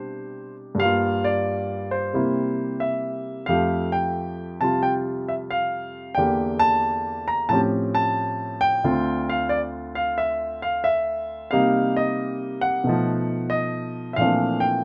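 A solo grand piano opens on a Cmaj9 chord in playful, warm swing jazz at 90 BPM in 4/4, its eighth notes swung. The piano sits up front with a polished, present tone and short sustain, ranging from D2 to Bb5 in light reverb. At 3.5 s the key shifts from C major to F major, and the harmony moves through colorful chords such as A7alt and B7#11 before arriving on Bbmaj9#11 at 14.2 s.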